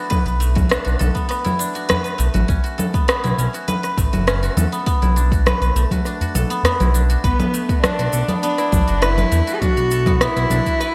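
Organic downtempo with an earthy, mystical mood, this excerpt opens on a ringing, silvery guzheng playing arpeggios with fingerpicks through delay. Almost at once an electronic beat settles in: a deep, layered kick and a kit of electronic congas, cabasa and rim click, treated with gated reverb and re-recorded in a large room. A smooth synth bass, built from sawtooth and square waves with a touch of ring modulation, sits up front with a sidechain pumping effect. A close, dry udu adds brief acoustic accents, and at 7.2 seconds a single bowed cello enters, dark and expressive, its vibrato and portamento carried by digital delay. The bright 1980s-style digital production is framed by a moderate plate reverb and small room ambience.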